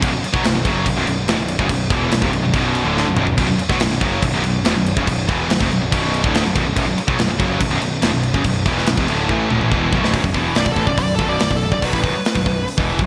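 A straight 4/4 pulse drives this dark, epic heavy metal passage, cut from a longer piece, with the drum kit up front, its tight kick, medium-tuned snare and rolled-off top framed by gated reverb, and fills breaking up the groove. Two bright, high-gain distorted guitars pick the low riff in the background, doubled by a very quiet, double-tracked overdriven stack guitar that stops at 10.1 seconds. Beneath them, a growly fuzz bass with overdrive, picked and heard direct and amped, anchors the bottom end. At 10.6 seconds a distorted lead guitar steps up front for a brief solo melody with a warm, high-gain tone. The bright 1980s-style digital production wraps the band in a lush hall reverb alongside a touch of small-room ambience.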